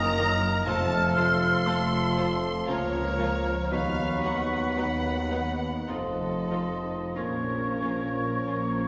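Elegiac and solemn, this romantic orchestral passage in 3/4 with a rubato feel sets an expressive violin section melody, sung with vibrato and portamento, against the second lines of an airy, hollow flute, a clear, distant oboe and a very quiet, softly attacked second violin section, while a lush viola section and a warm bassoon supply accompaniment, a mellow French horn section holds punchy chords, a concert harp rings fingerpicked arpeggios in the background, a soft tuba joins cello and double bass sections on the bass, and barely audible timpani sound from 0.7 to 2.1 s, with the ensemble set in a reverberant concert hall.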